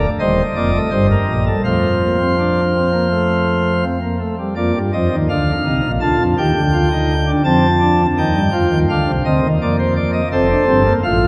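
Serious and solemn, this brief passage cut from a longer piece is a baroque-style four-part fugue for solo pipe organ, moving at a steady, straight pulse in four. The organ sounds on light, bright flute stops with a romantic voicing, sitting up front and spanning a broad range from deep bass notes to high treble lines. A reverberant church acoustic surrounds the instrument, letting each chord hang in the air for several seconds. The harmony moves from Eb to F in the opening section, then a second section starting around 4.6 seconds turns through Bb, D minor and F7 before settling back on Bb and closing on F. The sparkle of the flute registration lends a glint of clarity to the music's grave, contrapuntal character.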